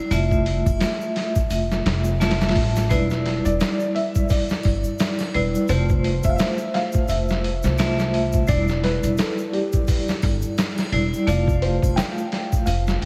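A bright, ringing vibraphone struck with hard mallets and bathed in tremolo and tape echo accompanies this melancholic, brooding trip hop excerpt at 86 BPM with a swung feel, alongside a woody pizzicato upright bass, a muffled, pitched-down sampler-style drum kit with a thumpy kick, and a faint egg shaker and triangle, while a soft felt-muted upright piano carries the melody from 2.9 seconds, all moving between Fmaj7 and Em7 in a dreamy, reverb-soaked mix with vinyl crackle.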